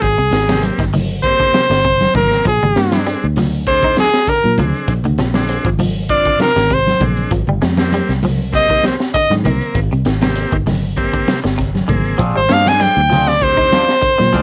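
This dry home recording on cassette has its top end cut off at 7.8 kHz, giving it a dusty, lo-fi character. In this funky, driving afrobeat excerpt, a brilliant, forceful trumpet plays a close-miked solo up front, singing with vibrato over a vamp that moves between Abmaj7 and Bb9. Beneath it sit a buzzy vintage combo organ with heavy vibrato, a round, foam-muted fingered bass, and a crunchy breakbeat kit of hi-hat, punchy kick and high-tuned snare, saturated and gritty with a rolled-off top. A bright, clean electric guitar picks arpeggios with subtle chorus from 0.2 s, and thick-skinned congas join in the background at 0.5 s. At 12.2 s a twangy, slightly broken-up guitar through a small old amp adds stabs.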